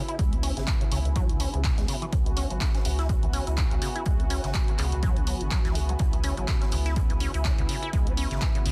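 A squelchy, resonant sawtooth acid bass carries this playful, trippy acid house excerpt at 124 BPM, its saturated riff filtered by a sweep that runs across the full 8.7 seconds, with dub echo and sidechain pumping. An up-front, dry electronic kick and a punchy analog drum machine with handclaps and hi-hat drive the swung 4/4 groove, joined by a deep, round sine sub bass and, barely audible, a big-room acoustic kit's hi-hat and snare. Over a Dbm7 chord, a detuned analog pad with chorus and tremolo holds sustained chords, while a dark, warbling, lo-fi tape-like pad lingers in the background, all within a dense, heavily limited modern master.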